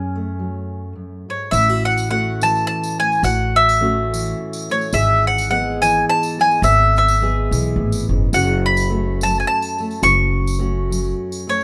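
Pastoral and nostalgic, this short cut from a longer acoustic folk piece moves in a lilting three-beat metre with a gentle swing. A bowl-back mandolin carries the melody up front, its picked double strings ringing bright across a high, singing range. Beneath it, a fingerpicked steel-string dreadnought guitar lays down a full-bodied accompaniment with the sparkle of fresh strings, while a pizzicato upright bass on gut strings adds a woody, thumpy, dark foundation that also sits close in the mix and drops out at 11.1 seconds. A jingly tambourine, heard as if in a small room, joins at 1.5 seconds as the music moves into its second section, drifting from F#madd9 through A6 and E/G# to settle on F#m. Studio reverb gives the whole a soft sense of space, though the balance keeps the rough feel of a home demo.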